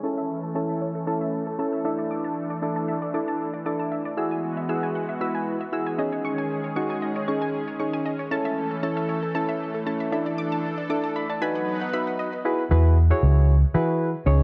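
Carefree and euphoric, this pop excerpt moves at 116 BPM in a straight 4/4 in E major, cut from a longer piece. Soft, mellow electric-piano-like synth keys carry the accompaniment up front, their gentle, chorused tone passing through a filter sweep that runs to 12.5 seconds, while a lush, thick unison pad of detuned sawtooth voices holds sustained chords beneath with a slow attack and long release. High above, a round analog pluck spins arpeggios through chorus and delay, its bright, warbling edge adding sparkle. The harmony circles through A, Dsus2, Eadd9 and C#sus2, with the keys adding a fill before a B chord sets up a drop at 12.5 seconds, when the pad and pluck fall away. A dark, foam-muted fingered electric bass then enters at 12.7 seconds, amped and up front, anchoring the final Eadd9 alongside the keys. The whole sits in a moderate, lush hall reverb with a dark, warm production.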